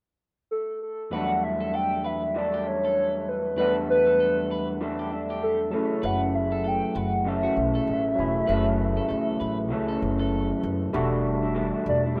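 A swung 4/4 groove at 98 BPM carries this wistful, hazy bedroom-pop excerpt in E dorian, where a warbling, nostalgic square-and-sawtooth lead with vibrato and analog chorus enters at 0.5 s and sits up front. From 1.1 s a dark, slightly broken-up, fingered guitar with drifting pitch and a gritty, barky overdriven tine electric piano trace Em11 and F#m7, while a quieter, twangy picked guitar adds a second line through lush chorus and analog delay. A woody pizzicato upright bass joins at 6.0 s, all set in light digital ambience with a rough, lo-fi home-demo character.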